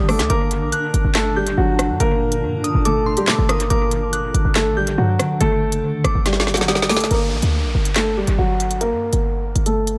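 A dark, mellow concert grand piano sits up front carrying the melody in this cold, tense drill excerpt at 141 BPM in a half-time feel, its dub echo and low-pass filter joined by a filter sweep from 7.1 seconds. Beneath it, a punchy, tight 808-style bass and an electronic drill kit with a woody snare and crisp hats drive the G harmonic minor groove, while a cloudy, wave-folded granular pad and a glassy, warbling FM bell in the background hold until 7.1 seconds, where a drum fill hands over to a downlifter. The mix is drenched in digital ambience and echo.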